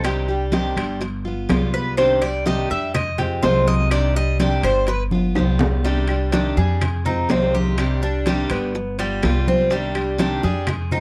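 A dry, close 1970s-style studio sound with light reverb frames this sultry, danceable Cuban son and guajira fragment at 124 BPM in C minor, where a metallic, double-strung Cuban tres takes an up-front solo through its opening 5.8 seconds over a thumpy, dark gut-string upright bass and a boxy picked archtop guitar with finger squeak, while bright compressed congas, round low-tuned bongos, ringing distant timbales and vintage woody claves sit in the background, the drums adding a fill at 5.1 s.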